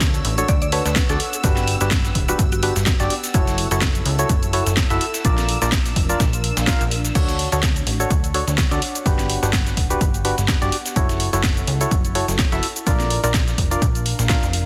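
Piano house with a euphoric, uplifting lift, cut from a longer piece, where a punchy, tape-warm electronic kick with studio reverb anchors a layered garage kit of cabasa, crash, hi-hat and an overdriven, cracking snare, while a very quiet, gritty sampler-style kit adds hi-hat and a fat snare underneath. A funky, resonant analog bass with sidechain pumping and a dark, hollow organ stab with chorus and digital delay drive the Dmaj7, Gmaj7, F#m7 and Bb progression, over a nostalgic, lo-fi tape-like pad that sits very quiet beneath everything. A shimmering vintage string machine glows in the background until 7.2 s, and a woody, round mallet-like pluck with chorus and delay flickers briefly from 0.5 to 2.7 s, all within a dense, heavily limited master.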